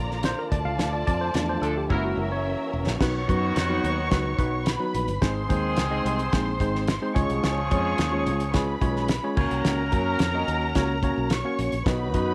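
Heard through moderate spring reverb in a small room, this joyful, danceable 1960s-style soul excerpt opens with a worn, slightly out-of-tune tine electric piano solo over a fast-rotary, lightly overdriven tonewheel organ, a round, foam-muted fingered bass, a thuddy cloth-damped drum kit with a fat snare, and lush, veiled con sordino strings, with a band accent from 0.8 seconds. Clear, tight horns join at 1.6 seconds, a drum fill follows at 1.9 seconds, and the organ drops away at 3.0 seconds, returning briefly at the close.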